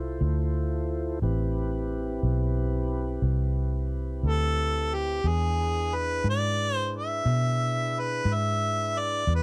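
A dry, close studio sound in a 1970s style frames this brooding, soulful slow blues in 12/8, cut from a longer piece. A tonewheel organ holds clean, sustained chords through a slow rotary speaker, sitting low in the mix beneath the other parts. Up front, a vintage fingered electric bass gives a dark, round, punchy foam-muted tone, moving from Dm7 to Am7 and then to E7 at 5.3 seconds. At 4.3 seconds a clear harmonica enters as the solo voice, overdriven yet smooth on top, with light vibrato and a classical poise. Together the parts carry a soulful, unhurried weight until the fragment breaks off at 9.4 seconds.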